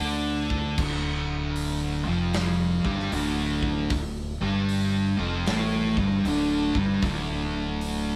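A thick, double-tracked fuzz guitar sits up front, its picked, distorted riff carrying the weight of this ominous, heavy stoner and doom metal fragment cut from a longer piece, holding on a single D minor chord with a swung, slow 4/4 feel. Beneath it, an overdriven fingered electric bass adds a bright, growly low end, while a big acoustic rock kit of kick, snare, hi-hat and crash sounds mid-forward and rolled-off at the top, with a tight kick and medium-tuned snare. The band plays live together in one room under moderate studio reverb, all three parts running the full 8 seconds or so.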